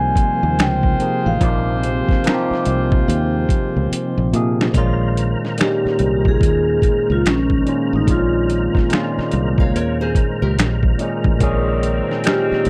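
Sultry, soulful neo-soul R&B with a swung feel, where a mellow soft-mallet vibraphone carries the melody over a barky, lightly overdriven tine electric piano with phaser, a fat, key-clicking tonewheel organ turning on a slow rotary speaker, a punchy foam-muted fingered bass and a gritty, pitched-down boom bap kit of thumpy kick, snare, hi-hat and finger snaps, while a bright vintage saxophone section stabs until 4.3 seconds and returns at 11.4, a fingerpicked nylon-string guitar adds a brief second line from 9.6 seconds, and the whole is a dry, close 1970s-style studio sound cut from a longer piece.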